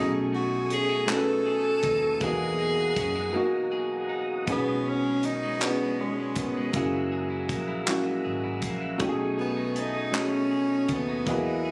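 A soft-attack tenor saxophone carries the melody over present baby grand piano, a slightly broken-up picked electric guitar line, a lightly overdriven tonewheel organ with key click and slow rotary sitting in the background, and a dark, round foam-muted fingered bass, with a dry, tight 70s drum kit of kick, hi-hat and handclaps entering at 0.7 s, in this intimate, slow six-eight R&B fragment at 53 BPM in B major that moves through rich chords like B13 and Emaj9#11, breaks for a silent gap, then resumes at 4.5 s with a close-miked jazz-style sax solo over light reverb and room ambience captured on a phone.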